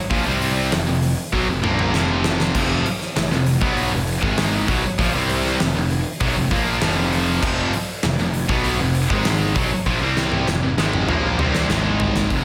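Aggressive and heavy, this hard rock excerpt cut from a longer piece pounds along at 98 BPM in a straight 4/4, resting on F minor before an Ab5 chord arrives at 11.7 seconds. Three distorted, picked guitars play riffs together in the background: one double-tracked, one high-gain with a slapback echo, and one scooped, all bright, over a growly fuzz bass that is overdriven and played with a pick. Up front, a huge acoustic arena kit with a fat snare and punchy kick throws in drum fills at 1.3 and 9.9 seconds, and the whole mix carries a big arena sound with moderate hall reverb.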